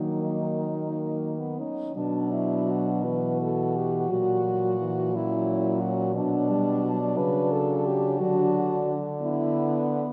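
Solemn and yearning, this short classical excerpt for horn quartet moves in a rubato 6/8 with uneven, breathing beats, bathed in the wet reverb of a church. A close-miked, up-front French horn carries the lyrical melody with light vibrato, while two mellow, distant horns sound a second line and accompaniment from deeper in the roomy space. A fourth horn, also warm and up front, anchors the bass as the harmony passes from E-flat minor at the start to B minor at 2.0 seconds.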